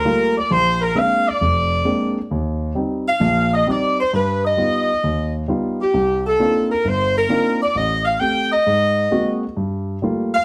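A swung 4/4 at 132 BPM drives this dramatic jazz excerpt in G minor, tuned to A4 = 436 Hz. A tight, close-miked saxophone section carries the melody up front between G4 and G5, while a dark, mellow grand piano accompanies from low in the bass, its intimate sound carrying audible action noise. Light reverb and detailed microphones keep both parts present as the harmony moves through rich chords such as Bb9, Gaug7 and Cm11 before settling on Gm9 at 9.6 seconds.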